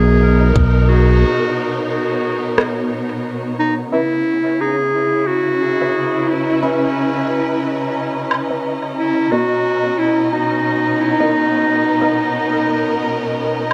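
A clear, smooth-topped clarinet melody with tape echo opens this hazy, meditative ambient dub excerpt at 89 BPM in C# dorian, over lush, vibrato-rich symphonic strings holding sustained chords, quiet ringing handpan arpeggios, a brief growly fingered bass note and a single tight electronic kick before a break at 1.2 seconds. An airy, breathy wind-like noise texture drifts in beneath, tape-warm rim clicks and woodblock hits scatter through dub echo, and from 3.9 seconds a muted, detuned sawtooth chord stab with phaser, chorus and echo sits in the background as the harmony moves from Bmaj7 to C#m7, with the handpan returning at 9.3 seconds. The whole is bathed in a dark echo-chamber reverb.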